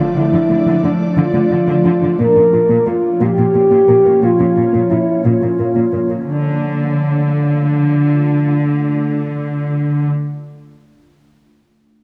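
Bathed in moderate concert hall reverb, this brooding, tense cinematic piece in 6/8 at 59 BPM sits in D harmonic minor, with a lush, bowed cello section singing with vibrato on the bass line, a mellow, distant French horn section holding chords up front, an ethereal, airy pad shimmering through phaser and chorus, and a soft, round pluck arpeggiating in the background through a filter sweep and digital delay until 6.2 seconds, as the harmony moves from Dm to Bbm and returns to Dm at 6.3 seconds.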